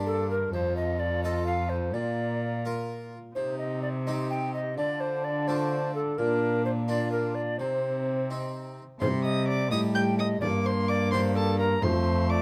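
Close, detailed microphones and light reverb frame this courtly, rustic renaissance-style consort dance in C dorian, moving at 85 BPM in a straight 6/8 and cut from a longer piece. A hollow, chiffy tenor recorder and a rich, nasal cello sit up front, while a smooth-topped, gut-string violin carries the melody in the background over a distant, dark viola and a full French-style harpsichord with two sets of strings. A very quiet frame drum enters at 9.0 s, as the opening section returns, and stops at 12.0 s.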